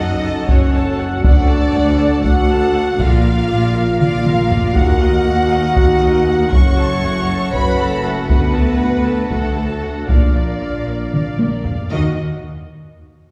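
Relentless and dark, this cinematic orchestral film score drives forward in 7/8 at 237 BPM (counted in eighths) in Eb harmonic minor, with a chamber violin section carrying the bowed, vibrato-rich melody while a lush, distant symphonic violin section sings a second line behind it. A focused viola section supplies accompaniment, a mellow, roomy woodwind section and a prominent French horn section hold sustained chords, and a close cello section joins a smooth double bass section on the bass. A heavy-stick taiko ensemble enters at 0.5 seconds and plays fills at 4.0 and 11.1 seconds, all within a reverberant scoring stage heard from further back in the room, in a passage cut from a longer piece.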